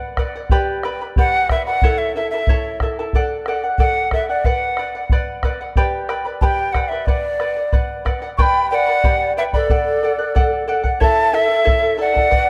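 Andean folk at 92 BPM in a straight 2/4, melancholic and earthy, with a bright, shimmering fingerpicked charango opening the passage up front and a round, close bombo entering just after, both sitting in light reverb under close, detailed microphones. A breathy, end-blown large quena with soft attack, vibrato and rolled-off highs carries the melody from 1.2 seconds over a minor-leaning progression centred on Bm, G, A and D. At 8.4 seconds a distant, airy, polished pan flute adds a tongued second line beneath the quena as the harmony shifts for the closing stretch of this section cut from a longer piece.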